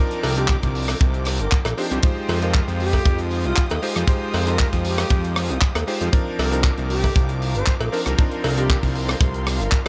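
A tight, up-front kick and a tight, small-room funk kit of handclaps, hi-hat and rim click drive this sleek, sensual nu-disco excerpt at 117 BPM in C minor, where a fat, detuned, saturated analog bass holds the low end, a compressed cowbell sits in the background, a clangy vintage electric grand piano with slapback echo and a lush, distant violin section both pump to the sidechain over Cm11 and Fm9 chords, and an airy, close-miked concert flute with vibrato and tape echo carries the melody from 0.4 seconds.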